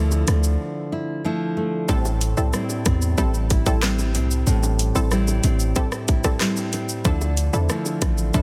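A hard-hitting 808-style bass anchors this short cut of tough, sultry dancehall in D minor at 93 BPM, its heavy sine tone punching up front alongside fingerpicked nylon-string guitar arpeggios and an electronic island pop drum kit with overdriven, metallic hats, a tight kick, handclaps, rim clicks and shaker, while very quiet, high-tuned bongos sit close and dry. A break falls between 0.6 and 1.9 seconds, after which a bright, detuned chord stab with a filter pluck and chorus enters as the harmony moves from Dmadd9 to Am7, returning to Dmadd9 at 7.1 seconds. Light digital ambience and a dense, heavily limited modern master give the whole a tight, forward sound.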